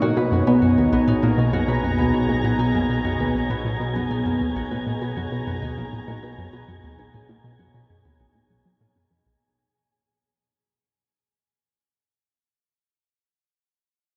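Expansive and luminous, this excerpt of ambient, sequencer-driven space music at 99 BPM in B major rests on a Bmaj7 chord, where a lush, detuned unison pad sustains up front, a ringing Celtic harp plays arpeggios with delay, a plucky analog bass riff gets a filter sweep, a warbling vintage drone hums in the background, and an airy, breathy wind-like noise texture enters at 0.2 seconds, all fading out within a vast cathedral reverb as the harp rings on alone until 12.5 seconds.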